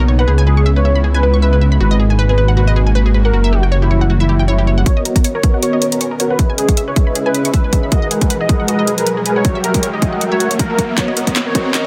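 Dry, dense and heavily limited, this short future bass excerpt sounds lush and dreamy at 157 BPM in 4/4, with a half-time feel and a light swing on the sixteenths. An airy, breathy pad holds soft, warbling chords in the background, while a punchy, full-bodied unison pluck spins bright arpeggios coloured by 12-bit sampler grit and digital delay. A velvety synth lead with vibrato carries the melody over a thick, saturated detuned saw bass that sits up front, all pulsing with sidechain pumping through a progression of C#m7, G#m9, F#7b9 and Bmaj9. The bass drops away as the build-up begins at 4.9 seconds, where a smooth, soft-attack supersaw riff enters under a filter sweep. At the same point a hard-clipped, overdriven electronic kick joins a trap kit of handclaps and bright hi-hats. A riser creeps in from 6.3 seconds, and a drum fill from 11.0 seconds pushes toward the next section.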